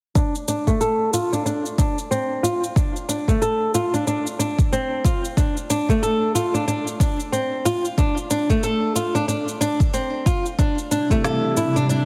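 Meditative and mystical, this organic downtempo excerpt in D minor moves at 92 BPM with a swung 4/4 feel, led by an up-front fingerpicked flamenco guitar playing arpeggios through a low-pass filter sweep and digital delay over a deep, tape-warm electronic kick and a softer electronic shaker with a woody snare, all set in a concert-hall reverb and a heavily compressed, radio-like sound; after the harmony shifts from Dm7 to C at 10.6 s, a cloudy, blurred granular pad and dark, muted felt-like synth keys with chorus and delay arrive at 11.0 and 11.1 s, both with sidechain pumping.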